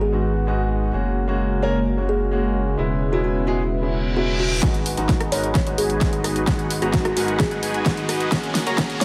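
Emotional and powerful, this festival progressive house excerpt at 130 BPM in G# minor opens with a woody, mellow kalimba melody carrying delay over a clear concert grand piano, a lush, chorused unison pad in the background and a deep, saturated sub bass, with the pad, bass and piano pumping from sidechain. A reverse cymbal and riser enter at 3.9 seconds. At 4.6 seconds the build-up begins as a huge, detuned supersaw riff arrives under a sweeping low-pass filter, joined by a punchy electronic kick and a big-room kit of hi-hat, rim click and up-front snare, both overdriven, playing a drum fill, while light reverb lends digital ambience to chords moving from G#m7 through F#add9 and E6.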